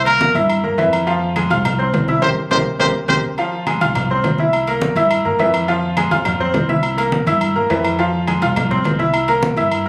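A straight 4/4 salsa pulse at 208 BPM drives this fiery, danceable fragment in F harmonic minor, where a punchy, up-front trumpet sings a vibrato-laced solo until 3.2 seconds over a woody, thumpy pizzicato upright bass, a brilliant, worn concert grand piano with audible action noise and deep bass, ringing metal-shelled agogo bells and timbales, and thin-skinned, low-tuned congas sitting in the background, with a band accent from 2.2 seconds and a drum fill from 2.8 seconds, all caught on a phone in a room with moderate club reverb.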